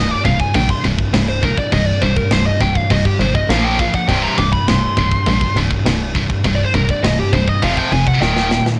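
A dark-toned, up-front high-gain lead guitar carries a distorted solo melody with a worn cassette-tape color across this grim, epic heavy metal piece in C minor at 102 BPM. Beneath it, two picked high-gain guitars drive a bright, distorted riff over C5, Bb5, F5 and Eb5 chords, one of them very quiet, while a tight, punchy sawtooth-and-square sequencer bass pulses with plucky, fast-decaying notes. An acoustic metal kit with a tight kick, medium-tuned snare and bright cymbals enters at 0.2 seconds, sounds big-roomed and cassette-tinged, and closes the cut with a drum fill from 8.2 seconds, all in a lightly reverberant home recording.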